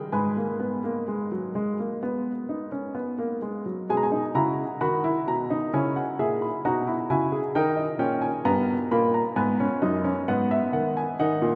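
A straight 4/4 pulse at 65 BPM carries this stately yet joyful baroque-style four-part fugue in G# minor, a short passage cut from a longer piece, played by a solo baby grand piano spanning F#2 to B5. The piano sounds dark, mellow and intimate, sitting up front with audible action noise and a short natural sustain, while a wet cathedral reverb with a 4.9-second decay places it in a vast, echoing space. A new section begins at 3.9 s as the harmony moves from G#m through G#m/B, C#m and D# before returning to G#m.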